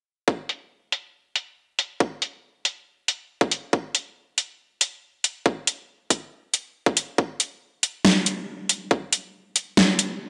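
Chaotic and menacing, this dubstep excerpt moves at 139 BPM in a half-time 4/4 feel, built entirely from layered, up-front electronic drums. A punchy, high-pass-filtered kick enters at 0.3 seconds and drops out at 9.0 seconds, while the dubstep kit pairs a huge, low-pass-filtered snare with metallic, filtered hats, both parts carrying a tape-warm character and studio reverb. A filter sweep runs across the drums throughout, and a moderate plate reverb gives the sparse, percussive arrangement a hard, roomy sheen.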